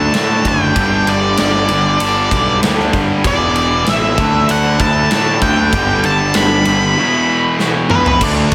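An up-front, dark octave-fuzz lead guitar sings its melody over a very quiet, twangy electric guitar at the edge of break-up playing arpeggios, two background riffing guitars (one compressed and distorted, one thick with fuzz, both carrying slapback echo) and a growly overdriven picked bass, as a punchy acoustic rock kit with bright cymbals joins at 0.1 seconds in this cathartic, anthemic quiet-loud alternative rock passage at 97 BPM, moving through Dadd9, G and E chords in a lush hall reverb for a big arena sound before a drum fill at 7.6 seconds.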